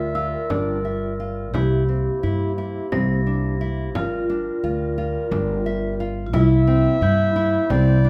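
A woody, growly pizzicato upright bass sits up front in this restless, hypnotic contemporary chamber piece in 7/8, cut from a longer work. A nylon-string guitar fingerpicks full-bodied arpeggios with audible finger squeak, a vibraphone with soft mallets rings out an airy second line, and a mellow woodwind section with light vibrato holds sustained chords, while a smooth classical clarinet carries the melody at the start, falls silent at 1.3 seconds and returns at 6.4 seconds. In the background, a large, close and dry frame drum and a dark, bell-like glockenspiel with rubber mallets add texture, and the ensemble sounds through a reverberant recital hall.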